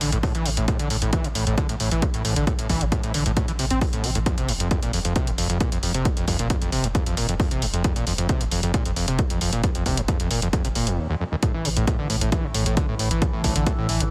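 A straight, driving 4/4 pulse at 134 BPM propels this intense, relentless peak-time techno excerpt in A minor, where a punchy, layered kick and a roomy electronic hi-hat underpin a squelchy, screaming acid riff that sits bright and up front with distortion, chorus, delay and sidechain pumping, a deep, round sine sub bass with overdrive, and, after a brief break at 11.0 seconds, a wave-folded drone with moving overtones that enters in the background just after the drop at 11.4 seconds, all heard through a heavily compressed, radio-like sound with light digital ambience.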